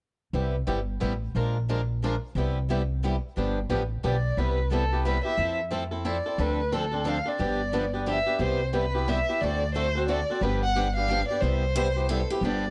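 A dry, close 1970s-style studio sound frames this lively, charming stretch of acoustic string swing in the jazz manouche style, moving at 179 BPM in 3/4 and C major. Two picked acoustic guitars, one steel-string and one boxy swing-style guitar set up front, carry the accompaniment through chords like Cmaj7, Bb7 and G7 over a woody, thumpy pizzicato upright bass with gut strings. A dark bowed violin with vibrato takes the melody from 4.1 seconds, and a bright steel-string guitar adds a brief second line with finger squeak in the background at 11.8 seconds.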